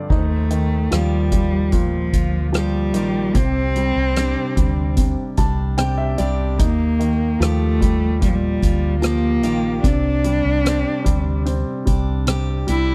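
A bowed solo cello carries the melody up front, its tone warm and focused with vibrato and a smooth top, lending this short fragment of a pop ballad a heartfelt, tender mood in a steady, straight 4/4. Beneath it, a clear, polished baby grand piano plays the accompaniment and adds a brief fill between 5.0 and 6.6 seconds, while a full-bodied steel-string acoustic guitar picks arpeggios further back in the mix. A vintage muted electric bass, played with the fingers, sits close and sounds dark, round and punchy. The drum kit is played with soft mallets, pairing a boomy kick and rim clicks with dark-toned hi-hat and crash cymbals. The harmony moves between Ebadd9 and Csus2, and the dry, close sound recalls a 1970s studio with little reverb.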